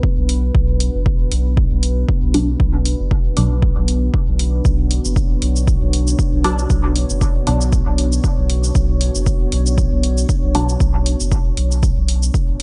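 A punchy, up-front electronic kick drives this cavernous, hypnotic dub techno excerpt at 117 BPM with a light 16th-note swing, joined by layered electronic hi-hat and shaker while a round, soft sub bass pumps beneath a dark, detuned ambient pad with chorus and reverb holding B minor, and from 2.3 seconds a muted, filter-plucked chord stab drifts through phaser and dub echo in a light digital ambience.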